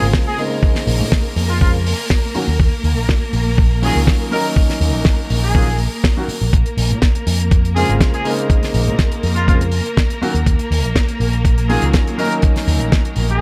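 Nu-disco at 122 BPM in a straight 4/4, this cosmic, sleek excerpt moves between Bbm9 and Ebm9 chords for its 13.4 seconds. A gritty, thumpy electronic kick sits up front from 0.1 seconds, joined by a dry, damped 70s kit with a fat snare and hi-hat. A picked electric bass, amped and run through an envelope filter with tube saturation, also sits up front with a warm tone. A clear concert grand piano with deep bass and an open character carries the accompaniment, shaped by sidechain pumping, slapback echo and a low-pass filter sweep that runs through the whole passage. Bowed studio strings hold focused, vibrato-tinged chords, also pumping against the kick. Above them, a distant, roomy pop-style trumpet section plays the melody with light vibrato and analog delay, all set in a small room ambience.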